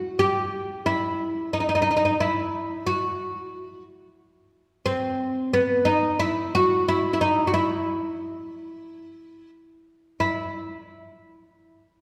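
In a straight, even 4/4, this soulful, hypnotic Arabic excerpt features a lone oud playing solo from the start until 10.5 seconds, its woody, deep, double-stringed, plectrum-plucked tone sitting up front. A lush, wet reverb gives it the long ring of a church or concert hall, and the music shifts into a new section at 10.2 seconds before the clip ends.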